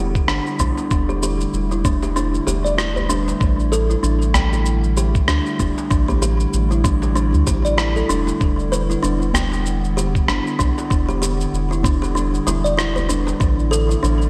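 Hypnotic and meditative, this organic downtempo excerpt in E minor moves at 96 BPM with a swung 16th-note feel, as woody, hollow kalimba arpeggios run through a low-pass filter and digital delay over a nostalgic, warbling lo-fi pad of sustained chords with chorus, built-in reverb and sidechain pumping, while a round, dark analog bass sits up front, a thumpy, gritty electronic kick and a compressed shaker and rim click with gated reverb arrive at 0.2 s, and a very quiet, deep djembe played with soft hands joins at 0.6 s, all shifting between Em7 and A7sus4 within a bright 1980s-style digital production and a moderate plate reverb.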